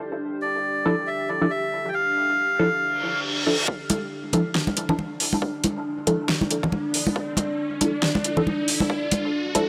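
Deep dubstep at 138 BPM in a half-time, swung D minor feel, meditative and heavy, this cut-off fragment opens on a moody, detuned sawtooth pad under a filter sweep holding a D minor chord, joined at 0.4 s by a reedy, breathy melodica line with dub echo and at 0.9 s by muted, phased dub chord stabs through cassette tape and echo, before a reverse cymbal leads into a build-up at 3.7 s where a punchy overdriven kick, a fat snare with metallic hats, hard-handed close congas and a rising riser drive on while the stabs are filter-swept, all in a dry, gritty recording with transformer saturation and light digital ambience.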